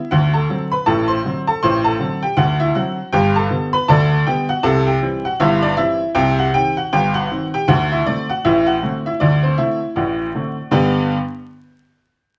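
A swung 2/4 pulse at 79 BPM carries this jaunty, lively ragtime fragment in G major, tuned to A4 = 445 Hz, where a solo upright piano with a clear, woody, slightly detuned tone and long sustain moves through D7, G, C and Cm before landing on G at 10.7 seconds, set in wet studio reverb heard from further back in the room amid vinyl crackle.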